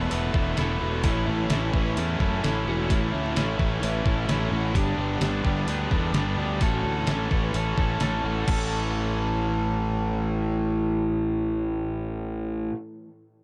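A straight 4/4 pulse at 129 BPM comes from a detuned 8-bit drum machine, overdriven and thumpy, with crash, hi-hat, kick and snare driving this blissful, hazy shoegaze and dream pop passage in A major until about 8.6 seconds. Two overdriven guitars play riffs together, one biting and up front with reverse reverb, the other crunchy with subtle chorus, over a round, fuzzed fingered bass, while a bright, clean twelve-string electric guitar adds compressed arpeggios with ensemble chorus and slapback echo in the background until 9.2 seconds. A swirling, phased string machine is barely audible for the first second, and the dry, dark production moves from Esus4 through Aadd9, G and A6 before resolving to A.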